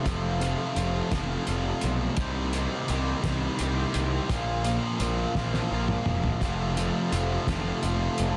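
Carefree and upbeat, this short cut from a longer indie rock piece rolls along in a lilting 6/8 with a straight feel, moving through F, C minor and B-flat suspended chords before landing back on F. A crunchy, bright overdriven electric guitar carries the riff, picked and double-tracked so it sits up front in the mix. Beneath it, a picked electric bass growls with fuzz and overdrive, punchy and warm, mixing a direct signal with an amped tone. The cloth-damped drum kit has a thuddy, muffled, lo-fi character, with a fat snare, a tight kick, gritty saturation and a rolled-off top end across hi-hat, snare and toms. A drum fill runs from 5.4 to 6.4 seconds, leading into the return to F. Everything sits in a small room, and the master is dense and heavily limited in a modern style.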